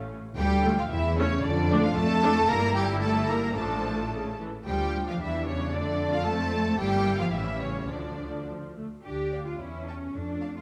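A lush, intense violin section carries the urgent melody up front in this dramatic, quick classical-period string orchestra excerpt in 2/4 with a rubato feel, joined by a smooth, close second violin line, a clear viola accompaniment, a rich cello bass and a soft-attacked, expressive double bass section, all bowed with vibrato in a moderate concert hall reverb as the harmony moves from D minor through diminished and dominant chords before a brief new section at 9.0 seconds.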